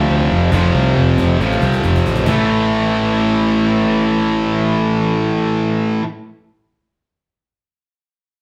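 A driving, menacing hard rock fragment opens on a bright overdriven electric guitar riff up front, joined by a high-gain distorted guitar in the background and a dark, round, punchy fuzz bass over an F chord, while a snappy cajon with snares plays a fill from 1.4 to 2.3 seconds before dropping out as the band shifts to A5 in a large, live-sounding studio room.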